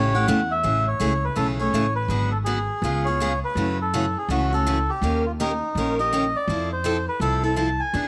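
Melodica, picked steel-string acoustic guitar and upright bass all sound together from the first moment of this lively, charming fragment of acoustic string swing in the jazz manouche style, cut from a longer piece and tuned a touch below standard pitch. The melodica carries the melody with a reedy, breathy, nasal voice, its plastic-case tone mellow, dark and smooth as it sits up front over a swung eighth-note feel. Beside it, the guitar supplies bright, fresh-stringed accompaniment, picked with audible finger squeak and a concert presence. The bass plays pizzicato on steel strings, woody and thumpy, holding the low end close to the listener. The harmony moves from A7 into Amaj7 at 0.6 seconds, then through G#m7b5, C#7, F#m7 and D#7 before landing on Fmaj7 at 6.5 seconds. Light reverb and a small room ambience give the trio an intimate, close-knit sound through to 8.1 seconds.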